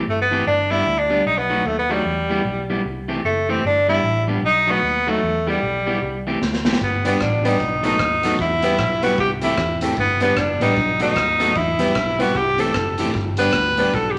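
A twangy electric guitar on the edge of break-up opens this cheerful, joyful ska excerpt, joined almost at once by a bright, forceful tenor saxophone carrying the melody with vibrato and a dark, foam-muted fingered bass, all cycling through a swung G, B7, Em, C6 progression. At 6.4 seconds a raw, gritty garage drum kit enters with a fill, its punchy kick and pumping stone-room sound adding weight, and at 7.0 seconds a worn, woody upright piano, slightly detuned with audible action noise, adds stabs. A large studio reverb lends the mix a wet, roomy glow, with the saxophone sitting up front.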